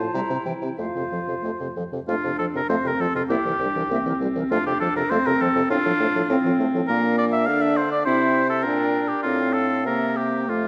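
A quick classical-period movement for wind quintet in F major, lively and graceful at 91-103 BPM in 2/4 with a rubato feel, in which a pure, very quiet flute carries the melody from a distance with vibrato and crisp attacks, an up-front, close-miked oboe sings the second line, a bright clarinet with a smooth top and a mellow, soft-attacked, roomy French horn fill in the accompaniment, and a warm, present bassoon anchors the bass inside a wet scoring-stage reverb, in this passage cut from a longer piece.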